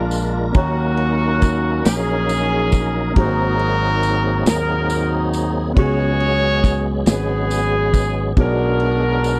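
A tight, vintage horn section carries the melody with light vibrato in this uplifting, hopeful slow gospel excerpt at 46 BPM in 6/8, over dark, smooth acoustic drums with kick, snare and ride, a punchy fingered electric bass, a natural-sounding grand piano in the background, full, clean tonewheel organ chords through a slow rotary speaker and chorus vibrato, and a jingly tambourine, all captured in a dry, close 1970s-style studio sound as the harmony moves from A#7 through D#m7, G#9 and C#7sus4 to Bm6.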